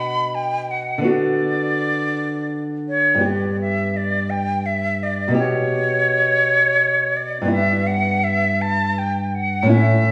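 The recording sits in a wet recital-hall reverb with a 1.4-second decay, giving the sound the spacious air of a church or concert hall. This serene, lyrical romantic duo for flute and classical guitar moves in a rubato 3/4 at around 83 BPM, tuned to A4 = 445 Hz, and is cut from a longer piece. Up front, a bright silver concert flute carries the melody between C#5 and B5, its airy, metallic tone shaped by vibrato, a soft attack and lifted highs for an expressive line. The nylon-string guitar, also close, provides accompaniment from G2 to G4 with a small, thumb-plucked sound and audible finger squeak. Both instruments play throughout the 10.1 seconds, moving from B minor through Bm/D to G at 3.2 seconds and settling on Em/G at 7.5 seconds.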